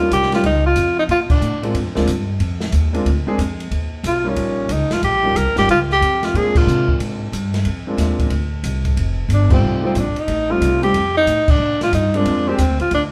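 Small-group swing and bop jazz with a sophisticated, swinging mood and a light swing lilt, heard as a brief slice of a longer performance. A breathy tenor saxophone sits up front with the melody, stating it in three short, whispered phrases with vibrato, soft attacks and scooped notes; the last phrase begins at 9.3 seconds. Beneath it, a baby grand piano comps with a natural, long-sustaining tone over ninth chords on Eb, Bb and F, while a woody, thumpy pizzicato upright bass anchors the low end. An acoustic drum kit with dark cymbals, a medium-tuned snare and a boomy kick keeps time on ride, hi-hat and crash, its rolled-off top staying smooth and unobtrusive. The full band hits shared accents, including one at 1.3 seconds, and the quartet sounds like it is playing live together in a reverberant stone room that gives the intimate horn a warm halo.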